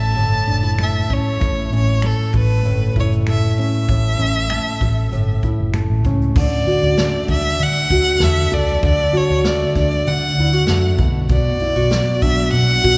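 Easy-going and heartfelt, this short acoustic pop passage in D major moves at 97 BPM in a straight 4/4, drifting from A to D at 6.4 seconds and on to Bm. A clear, focused violin carries the bowed melody with vibrato up front, over a dark, full-bodied nylon-string guitar plucked with the thumb and a round, foam-muted electric bass. From 0.2 seconds a natural country kit adds punchy kick, medium-tuned snare, shaker, finger snaps and crash cymbal, all bathed in the long, wet reverb of a church.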